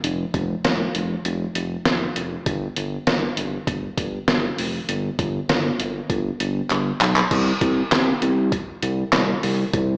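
A muffled, pitched-down sampler-style drum kit with a thumpy kick, fat snare, hi-hat, handclaps and crash cymbal opens this wistful yet upbeat synth-pop fragment together with a smooth, dark synth bass of sawtooth and square tones with vibrato, both up front in a lush hall reverb that sounds like a big sound system in a bare room heard through small speakers, and a drum fill at 6.7 s leads into a new section at 7.3 s.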